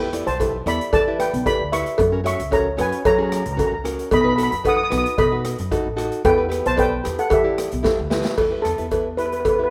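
A rough home-demo mix with moderate plate reverb and small-room ambience frames this bittersweet, moody calypso excerpt in E minor, moving at 113 BPM in a straight 4/4 over chords that run from Em7 through F# and B. Up front, a shimmering lead steel pan played with medium rubber sticks carries the melody, while a fingerpicked classical nylon-string guitar and a woody pizzicato upright bass fill out the harmony and low end beneath a polished street-band drum kit with dark cymbals and a boomy kick, and a band-limited vintage cowbell rings prominently in the mix. A drum fill at 7.8 seconds leads into a brief steel pan solo from 8.4 seconds as the harmony settles on Em.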